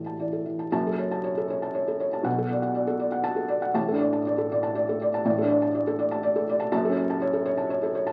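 Reflective and intimate, this short excerpt of neoclassical minimalist piano moves in a rubato 3/4 at around 120 BPM, tuned slightly low to A4 = 439 Hz. A felt-muted upright piano plays solo throughout the 8.1 seconds, spanning F#1 to A5 with a soft, mellow tone, short sustain and the audible noise of its action placed up front. The harmony opens on Asus4, settles on F#m at 0.7 seconds, passes through Bm7, returns to Asus4 at 3.8 seconds and comes back to F#m. A small, wet room reverb gives the instrument a close, natural space. Vinyl crackle from a very old 78 rpm record lends the sound a worn, nostalgic patina, and the clip is cut from a longer piece.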